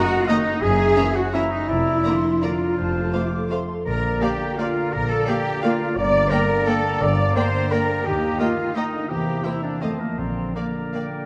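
A dark, warm production set in a reverberant scoring stage gives this short orchestral ballroom waltz a festive, sweeping character. It moves in 3/4 at 169 BPM in Bb major, with uneven beats and an elastic rubato feel. A chamber violin section carries the melody with smooth vibrato, sitting back in the mix. A second violin line is joined there by a vintage-toned solo clarinet, a pure-sounding small flute group and a distant, roomy oboe. Violas supply focused accompaniment, while a close, rich cello section and a bowed double bass section, entering at 0.6 s, anchor the bass. A very quiet mellow French horn section and a tight, bright trombone section hold sustained chords, a concert harp rings out fingerpicked arpeggios, and a clear solo trumpet adds stabs. Round, soft-mallet timpani appear at 10.2 s as the harmony settles on Bb.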